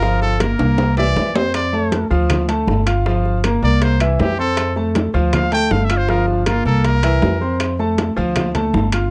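A dry, close, 1970s-style studio sound in a small room frames this joyful, danceable salsa cut from a longer piece, moving at 158 BPM in 4/4 in F major over a repeating Gm7–C7–F6–Dm cycle. A bright, punchy trumpet with vibrato takes the solo melody until 7.6 s, while an intimate, polished grand piano with audible action noise and long sustain sits up front beside a thumpy, gut-strung pizzicato upright bass. Soft-handed, high-tuned bongos and compressed, thin-skinned congas stay in the background, ringing metal-shell timbales enter at 0.4 s, a drum fill runs from 0.6 to 1.5 s, and very quiet, woody vintage claves join at 1.5 s.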